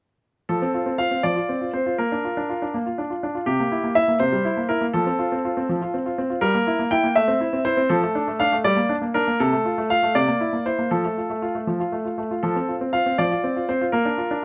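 Closely miked and nearly dry, this recording puts a bright grand piano up front, its polished tone ringing with long sustain while the noise of the action stays audible. It is an elegant, playful classical-period sonatina in F major, moving at 81 dotted-quarter beats per minute in a straight 6/8, with the solo piano spanning C3 to G5. A section built on F, B-flat and C7 chords runs from 0.5 to 12.4 seconds, passing through A minor, D minor and G minor before cadencing, and a restatement begins that breaks off at 14.4 seconds as part of a longer piece.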